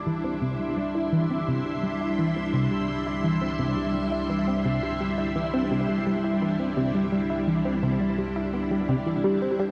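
A steady, straight 4/4 pulse at 85 BPM is set by a tight sequenced synth riff, its driving, detuned sawtooth and wave-folded tones plucked by a fast filter attack and colored by chorus, phaser, delay and shimmer reverb. This is ambient, sequencer-driven space music in C major, luminous and expansive, resting on a single Cadd9 chord throughout the nearly ten-second passage cut from a longer piece. Up front, a full string machine ensemble holds lush, vintage sustained chords from G3 to C6, swelling in on a slow attack through ensemble chorus and shimmer reverb. Far beneath, an analog drone on C2 warbles and evolves in the background with pulse-width movement and chorus, fading in across the whole passage. A very quiet Celtic harp rings out fingerpicked arpeggios between B3 and C5, adding a bright acoustic glint, while a moderate plate reverb gives the mix a spacious tail.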